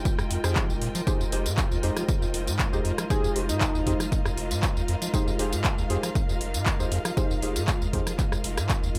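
A squelchy, saturated square-wave acid bass riff with cassette-tape grit and delay drives this raw, gritty acid house excerpt over a punchy, up-front electronic kick and a booming analog drum machine with metallic hats, handclaps, rim clicks and tambourine, while deep, dark chord stabs, a warbling lo-fi pad, a lush, dark symphonic string section with vibrato and a brief plucky, detuned unison lead from 3.1 to 4.2 seconds fill out the fairly dry mix.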